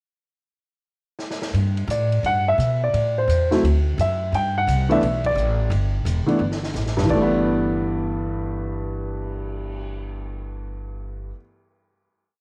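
Jazz piano trio in G major, a brief, swinging whole piece at 174 BPM in 4/4 with a 64% swing on the eighths and a homespun cassette character. A distant, roomy big-band drum kit opens with a fill at 1.2 seconds, with dark cymbals, a punchy kick, a medium-tuned snare and a sticks ride pattern. A woody, growly upright bass walks up front from 1.5 seconds, and a natural-sounding baby grand states a bebop-style theme over syncopated comping in rootless voicings, before the trio settles on a closing G6/9 chord at 7.1 seconds in a small, lightly reverberant room.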